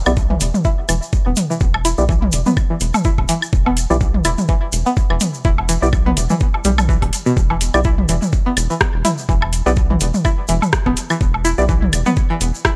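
Minimal techno at 125 BPM in E minor with a light 16th-note swing, this short cut from a longer piece feels cool and clinical, built on a rubbery, bouncy square bass with tube saturation and sidechain pumping alongside a knocking, layered electronic kick, both placed up front. A twangy, string-like resonator pluck riff with chorus, phaser and tape echo and a mellow, organ-like percussive stab with analog chorus and tape echo both carry filter sweeps across the whole span, while electronic woodblock and toms add tape-echoed accents. A booming analog drum machine brings metallic hi-hats and rim clicks from 0.4 s, a grainy tube shaker fills the top, and the whole sits in a dry, gritty hardware recording with digital ambience.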